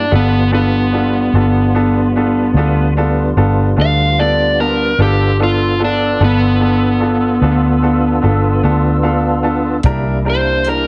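A heavily compressed, radio-like sound with light reverb frames this gritty, swaggering slow blues fragment in 12/8 at 49 BPM, moving from G9 to C9 in G mixolydian. An overdriven slide guitar sings the melody up front, dark and treated with plate reverb, over the round, foam-muted thump of a vintage electric bass and the fat, key-clicking sustained chords of a tonewheel organ, which sits in the background with slow rotary speaker and chorus vibrato. A brilliant, woody upright piano accompanies and plays a fill from 8.6 to 9.8 seconds, when a small cocktail kit with a punchy kick and hi-hat finally enters.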